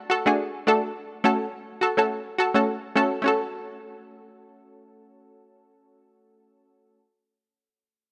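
Sultry and tough, this short dancehall fragment with a lightly swung feel centres on a punchy, detuned sawtooth-and-square chord stab, bright and up front with a fast filter pluck and chorus, moving from D to F# minor in a small, lightly reverberant room.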